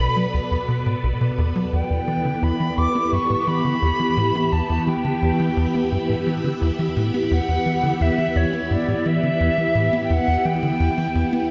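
Wet and echo-heavy in a reverberant chamber, this excerpt of expansive, mysterious sequencer-driven space music moves at 86 BPM in 4/4, with a tight, punchy sawtooth sequencer bass riff driving beneath swirling, warbling phased string-machine chords and a pure, vibrato-laden silver concert flute melody glistening with shimmer reverb and tape echo, as the harmony shifts from Bm7 to Em at 1.7 seconds.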